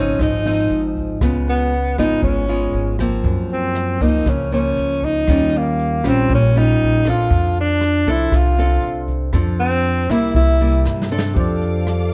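Bossa nova with a sophisticated, relaxed mood, cut from a longer piece: a breathy alto saxophone with vibrato and scooped notes carries the melody over fingerpicked nylon-string guitar, woody pizzicato upright bass and a dark, smooth brush drum kit, set in a studio room with light reverb. The harmony moves from Dbmaj9 through Gbmaj7#11 and Eb9 to F6, and once the saxophone's line ends at 10.8 seconds a drum fill follows at 10.9 seconds. At 11.3 seconds a bright, barky tine electric piano with light overdrive enters, joined by a lush, bowed symphonic string section holding soft-attack sustained chords.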